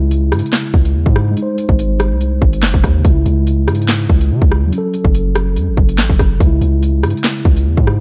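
Ominous and cold, this drill hip hop excerpt in C# harmonic minor moves at 143 BPM with a half-time feel, setting a mellow, clean tine electric piano over C#m, G#, C#m, F#m and C#m changes against a deep, sine-toned 808-style bass with long decaying notes up front, and an overdriven electronic drum kit, also up front, of hard-clipped kick, sharp snare, metallic hi-hats, rim clicks and handclaps in a dark, dry production.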